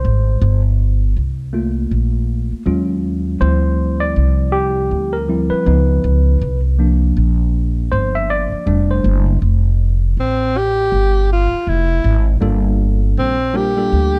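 The recording has a dark, warm sound, set in a small room with a touch of reverb. This is a smooth, relaxed piece of jazz-hop, laid over a swung hip hop groove and cut from a longer performance. A worn, slightly out-of-tune tine electric piano sits up front and carries a solo through the opening section, with chords such as Gm9, Ebm11, Db9 and C7sus4 giving the harmony a lush, searching colour. Underneath, a woody, thumpy upright bass is played pizzicato on steel strings and sits prominently in the mix. At 10.2 seconds a breathy alto saxophone enters with soft attacks, scooped notes and gentle vibrato, playing a mellow jazz-style solo over a Fadd9-to-Gm9 passage until the fragment ends at 14.2 seconds.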